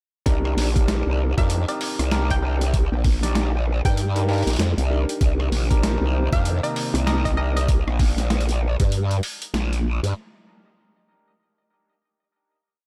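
Recorded with light reverb and a digital ambience, this short glitch hop piece sounds swaggering and funky, one drop running from 0.3 to 10.2 seconds over a swung 4/4 groove on a Cm9 chord. An up-front growl bass carries the low end with bright, saturated, wobbling phrases whose wobble speed changes, thickened by chorus and tube saturation. Meanwhile, a knocking, layered electronic kick drum re-recorded in a small room plays a broken pattern until 8.9 seconds, alongside a gritty, pitched-down boom bap sampler-style kit of closed and open hi-hat, rim click and a high-tuned overdriven snare in a swung beat with edits. An overdriven tine electric piano, run through a combo amp with phaser, sidechain pumping and tape echo, stabs out a rhythmic chord riff in rootless voicings until 7.6 seconds. From 1.4 seconds a woody, wave-folded pluck sits in the background with short answering phrases coloured by chorus and tape echo, while a very quiet, warbling, nostalgic pad with a slow attack and long release adds dark sustained chords from 5.5 to 7.7 seconds.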